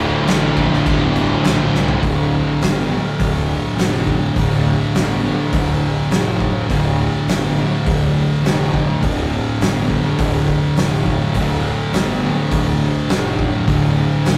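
A straight 4/4 pulse at 103 BPM drives this sludgy, brooding stoner and doom metal excerpt in D minor, where two thick fuzz guitars, one dark and one warmer, grind out riffs over a growly, overdriven fingered bass, a bright double-tracked overdriven guitar sounds only for the first 2.0 seconds, and an up-front, oversized low-tuned drum kit with a boomy kick, fat snare and dark cymbals enters at 0.3 seconds and throws a fill at 1.7 seconds, all captured in a rough rehearsal-room sound with moderate reverb.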